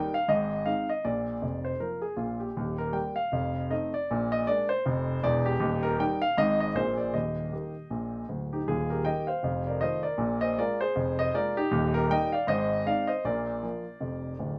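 In a moderate club reverb, a polished, up-front grand piano plays solo stride jazz in Eb major at 157 BPM with a swinging, exuberant 4/4 lilt, ranging from D1 to G5 across two matching passages (the second beginning at 8.7 s) that cycle through Eb, Ab, F7 and Bb7 harmony in this short cut from a longer piece.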